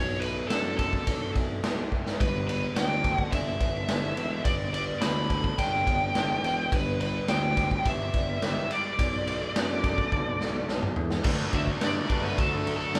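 A straight 4/4 pulse at 106 BPM drives this restless, bittersweet stretch of quiet-loud alternative rock, cut from a longer piece, with a raw garage drum kit up front, gritty and saturated with a punchy kick, throwing in fills before a lead guitar solo takes over at 11.3 seconds. A bright, high-gain lead guitar carries the melody over twangy, slightly broken-up arpeggios from an electric guitar through a small old amp in the background, while a mellow tuba with vibrato plays the bass line. A double-tracked, compressed fuzz guitar riff joins at 11.2 seconds as the chords move from Bm7 and Gadd9 toward D, with the band playing live in one room under light reverb.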